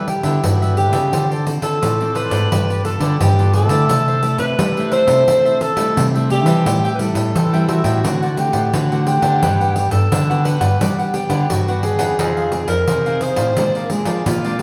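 A breathy alto saxophone opens this playful, lively samba-choro fragment, carrying the melody up front with light vibrato, soft attacks and an intimate, whispered jazz-style tone. It is joined from the first moment by a bright, crisp picked cavaquinho, a warm fingerpicked nylon-string guitar, and a nylon-string bass guitar, with a jingly pandeiro entering at 0.1 seconds. The band plays live together in one room under a generous, wet studio reverb, moving through lush jazz-tinged chords such as G69, C69 and Gmaj7 before a turn to Fm7 and Bb9 near the end.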